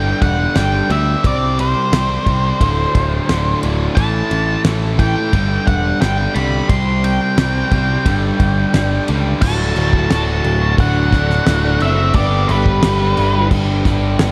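Classic rock at 88 BPM in D mixolydian, swaggering and driving, this excerpt opens with a dark octave-fuzz lead guitar carrying the melody over two overdriven rhythm guitars in the background, one biting and the other a bright cranked stack with slapback echo, while a picked, up-front electric bass holds the low end. A damped 70s kit with a fat snare, tight kick and dark cymbals enters at 0.2 seconds, and at 9.4 seconds a bluesy, distorted second lead guitar joins in the background as the chords shift toward D and G. Everything sits in a big arena sound with a lush hall reverb.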